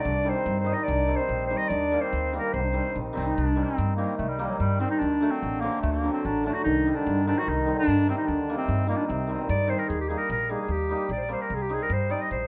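Soulful, festive klezmer in 2/4 that speeds up throughout this short clip, with a vintage-toned clarinet carrying the melody up front in plate reverb, a clear, distant trombone adding a roomy second line in two passages (from 0.0 to 3.2 s and again from 6.6 s), a shimmering, ringing hammered dulcimer accompanying, and a woody, thumpy pizzicato upright bass on gut strings, all moving over C minor, E-flat and D chords in a moderately reverberant studio.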